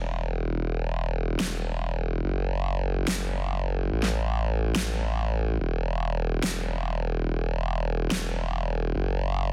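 Heavy wobble dubstep at 143 BPM in 4/4, played with a half-time feel and a light swing on the sixteenths, this short excerpt from a longer piece comes across as aggressive and weighty, tuned slightly flat to A4 = 439 Hz. A formant-sweep wobble bass sits up front from the very start and runs through to 9.5 seconds, growling between E1 and A1 with a blend of sawtooth and sine tones pushed through a formant filter. Its fast attack, sustained body, compression, chorus and overdrive give it a thick, snarling presence. At 1.4 seconds a huge, layered electronic snare drum joins, its overdriven crack cutting through until it stops at 8.2 seconds. With little reverb and a dense, heavily limited modern master, the sound feels dry, close and crushing.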